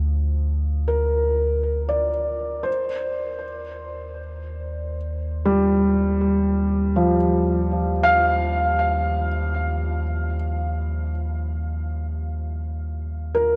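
A round, deep sub bass fades out beneath a felt-muted upright piano that fades in with intimate, mellow arpeggios in free time, moving from Bb/D to Eb at 2.7 s in this luminous ambient fragment in Eb major, tuned to A4 = 441 Hz, bathed in a huge, wet reverb and recorded to cassette tape.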